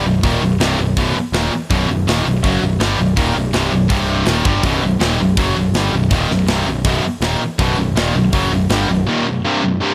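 A bright, high-gain distorted guitar drives this aggressive, heavy metal excerpt at 163 BPM in straight 4/4, its riff up front while a second tight distorted guitar plays a riff in the same low register further back. A growling, overdriven electric bass, picked and warm, sits beneath them until 9.1 seconds, and an acoustic drum kit with a tight kick, medium-tuned snare and hi-hat enters at 0.2 seconds with a mid-forward, big-room sound. The harmony rests on B, moving briefly to C5 at 3.9 seconds before returning, all within a small room ambience.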